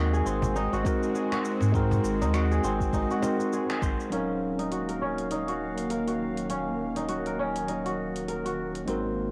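Earthy and warm, this short cut from a longer organic downtempo piece sits at 101 BPM in 4/4 with a lightly swung sixteenth-note feel, in Eb dorian, moving from an Ab7 chord to Ebm7 at 4.1 seconds. A fingerpicked kora, mellow and ringing yet crisp and up front, spins arpeggios through a low-pass filter and tape echo, while a clean tine electric piano heard through its built-in speakers accompanies it with its own tape echo. A string-like, tense drone of detuned sawtooth and triangle layers with noise, ring modulation and vibrato swells in slowly on sustained chords, and a filter sweep runs over it from 4.1 seconds to the end. A deep, round sine sub bass anchors the low end, pumping with the sidechain alongside the electric piano and drone. The rhythm bed mixes a quiet kit of finger snaps, metallic hats and shaker with a snappy, close and dry cajon and a layered electronic kick, the latter two dropping out at 4.0 seconds just after a band accent at 3.7 seconds. 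A moderate spring reverb and the character of a home cassette recording frame the whole piece.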